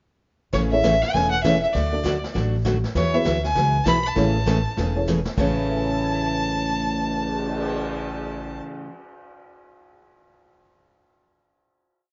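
This short, cheerful western swing piece opens at 0.5 seconds with a clear, focused fiddle playing a motif-based melody of call phrases with light vibrato, backed by bright, full-bodied four-to-the-bar acoustic guitar up front, a woody pizzicato upright bass walking up between roots and fifths in a two-beat pattern, and a vintage brush kit sweeping the snare with dark cymbals and a punchy kick. A jangly, detuned honky-tonk upright piano adds syncopated comping in close voicings from the background. After a drum fill at 5.1 seconds the band settles onto a final chord. The guitar sustains until 8.9 seconds, and the piano rings on last until 9.5 seconds in a lightly reverberant, rolled-off sound.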